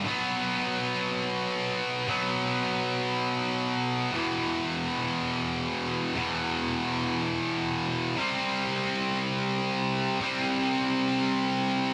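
In free time, this dark, aggressive metal excerpt features a lone high-gain electric guitar, picked and double-tracked, sitting up front with a bright, heavily distorted edge in a moderate studio ambience. Across its roughly 12 seconds, the guitar moves through power chords on B, then E at 4.1 seconds, then C at 8.2 seconds, ranging from E2 to C4. It is cut from a longer piece.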